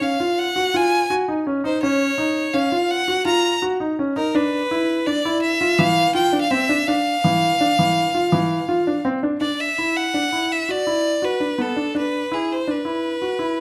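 This contemporary instrumental chamber piece, cut from a longer work, moves at 166 BPM in an uneven 7/4 with a straight feel, and its mood is hypnotic and pensive. A single bright violin carries the melody within a range of G#4 to A#5, bowed with vibrato and an airy, intense tone that sits close and up front. Beneath it, a baby grand piano plays polished, present arpeggios between E3 and F#4, with a warm tone that also stands forward in the mix. The harmony opens on an F#5 chord, shifts to Dmadd9 at 4.4 seconds, and settles on Bm when a new section begins at 9.4 seconds. Light reverb gives the pair a modest sense of room, and the tuning rests slightly below standard at A4 = 439 Hz.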